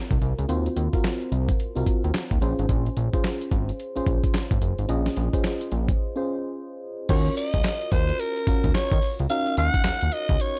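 Slick and confident, this short cut from a longer new jack swing R&B piece moves at 109 BPM in Eb dorian with a swung sixteenth-note feel, its dusty, sampler-style drum kit up front with a thumpy kick, gritty handclaps, hi-hat, tambourine and crash. A fat, saturated analog bass and a round, warbling FM electric piano with chorus fill out the dark, dry production over Ebm69 and Bbm9 chords, with a brief break arriving at 6.0 seconds. At 7.1 seconds the harmony moves to Ebm9 as a breathy, raspy alto saxophone takes a close-miked, growling solo, joined by a very quiet, grainy tube shaker.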